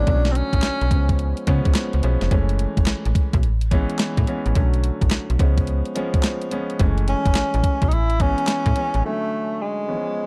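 Bouncy and punchy, this new jack swing R&B passage, cut from a longer piece, moves at 107 BPM in F# minor with a swung sixteenth feel, cycling through Bm7, C#7, F#m7 and Amaj7 before settling on Dmaj7#11. A crisp, tape-tinged 8-bit drum machine with thumpy kick, snare, handclaps and hi-hat sits up front beside a snappy, metallic slap-like FM bass, while a concert grand piano with audible action noise and long sustain accompanies throughout. A mellow tenor saxophone, up front with vibrato, subtone and scooped notes, plays a brief phrase at the start and returns at 7.1 seconds, carrying on through the break after the drums and bass stop at 9.0 seconds, all within a dark, warm small-room sound.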